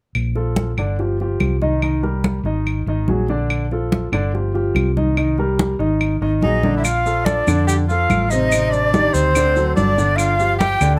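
A straight 4/4 groove at 144 BPM from woody claves and bright, soft-handed congas opens this sunny, sophisticated Afro-Cuban jazz excerpt in Bb major, where a dark, round hollow-body electric bass and an intimate grand piano with audible action noise fill out the harmony in a moderate club room, until at 6.4 seconds an airy, vibrato-laden flute with plate reverb takes the melody over a bright tenor saxophone second line, and grainy maracas join at 6.8 seconds as the chords shift.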